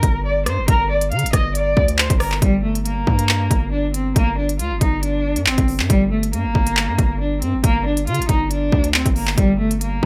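A rich, focused bowed cello sings a vibrato-laden melody through a low-pass filter over a heavy, saturated 808-style bass with a gritty noise layer and an overdriven electronic drill kit of hard-clipped kick, crisp hi-hats, handclaps and rim clicks, all at 138 BPM in a half-time feel in G minor, giving this cut from a longer hip hop drill piece an ominous, cold mood within a light reverb.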